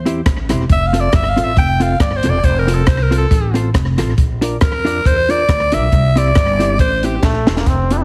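Ska at 138 BPM in 4/4 with a light swing on the eighths, this cheerful, joyful passage in F major is cut from a longer piece and moves through C, F, Bb and back to C. A raspy, gritty alto saxophone carries the melody up front as a solo with vibrato and a slapback echo, playing from the start until 7.2 seconds, when a brilliant trombone with light vibrato and its own slapback echo takes over the melody to the end. Underneath, a woody pizzicato upright bass with steel strings anchors the low end, while a dark, clean hollow-body jazz guitar, fingered and compressed, fills in the accompaniment. A compact cocktail drum kit sits forward in the mix with a punchy kick, a high-tuned snare, rim clicks and hi-hat in a smooth, small-room sound, adding a fill near the end of the section, and a very quiet group handclap adds a crisp, close presence. The whole recording has light reverb and studio ambience, heavily compressed like a radio broadcast and dusted with vinyl crackle.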